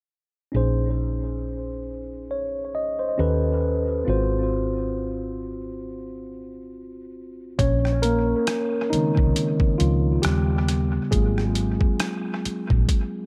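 A mellow tine electric piano, soaked in dub echo, and a dark, round fretless bass open this sultry R&B/neo-soul excerpt at 0.5 seconds, moving through Bbm9, Ebaug7 and Ab6 at a slow 68 BPM with a loose sixteenth-note swing in Bb minor. At 7.6 seconds a gritty, pitched-down boom bap sampler kit arrives with a thumpy kick, hi-hat and rim click, also carrying dub echo, as the clean piano takes a solo over the returning progression, now resolving to Ab13. Piano, bass and drums all sit up front in a digital ambience that gives the soulful mix a heavy echo.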